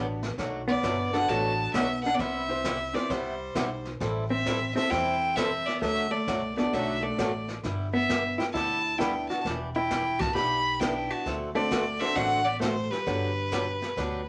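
A clear, focused fiddle sits up front with light vibrato, carrying the melody from 0.7 seconds in this playful, swinging western swing excerpt from a longer country piece. Beside it, a dark, clean hollow-body jazz guitar plays a fingered second line. A bright, boxy picked acoustic guitar and a jangly, metallic tack piano fill out the accompaniment, with the piano dropping out at 12.2 seconds. Underneath, a woody, thumpy pizzicato upright bass anchors the bottom, while a jazz kit played with brushes adds brushed snare, hi-hat and a boomy kick from a small, natural-sounding room. The chords move through jazzy major-seventh, sixth and minor-seventh colours, and a wet studio reverb ties the band together.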